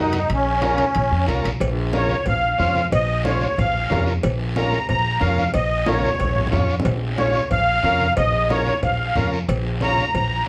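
A short excerpt of passionate, danceable cumbia in Bb minor opens at once on a shimmering, reedy musette accordion carrying the melody up front, bathed in plate reverb, over a buzzy vintage combo organ with heavy vibrato filling out the accompaniment. A woody, thumpy upright bass sits up front in its low register, played pizzicato, while the percussion enters at 0.1 seconds: low-tuned, thick-skinned congas played with soft hands and a raspy guiro both sit distant in a large room in the background, and ringing metal-shell timbales and cowbell sound close and dry. The groove moves at a brisk 183 BPM in straight 4/4, settling on a Bb minor chord early on. A drum fill sounds from 6.0 to 6.9 seconds before the passage is cut off. The whole recording carries the worn, warbling character of old cassette tape, with a noticeable pitch drift and a moderate studio reverb.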